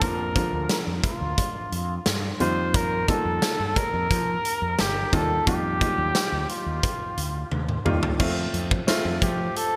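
This 1980s-style pop excerpt moves at 88 BPM in a straight 4/4, carrying an uplifting, nostalgic mood through chords of Bb and Ebadd9 before arriving on F at 8.2 seconds. A clear, vintage-toned flugelhorn takes the solo melody up front, singing with vibrato and scooped notes, with a digital delay trailing its lines. Underneath, a dark baby grand piano plays mellow, intimate accompaniment with short sustain and audible action noise, while a fretless electric bass adds a round, punchy low end that stops at 9.5 seconds. The big rock drum kit sits up front with a punchy kick, medium-tuned snare, bright cymbals, tambourine and toms, its gated reverb giving a big-room punch, and a drum fill from 7.5 to 8.2 seconds leads into the closing section. A lush hall reverb and bright digital production wrap the whole piece in a polished period sheen.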